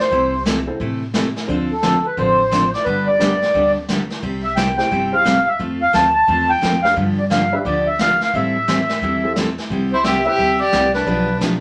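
Swinging and playful, this western swing passage, cut from a longer country piece, rides a swung feel, with a reedy, mellow accordion carrying the melody up front over a bright, full-bodied picked steel-string guitar with audible finger squeak. A distant, roomy brush kit, a thumpy gut-string upright bass and a worn, slightly detuned upright piano fill out the accompaniment in a wet studio ambience. At 9.9 s a clear, biting bowed fiddle enters close with light vibrato as a second line.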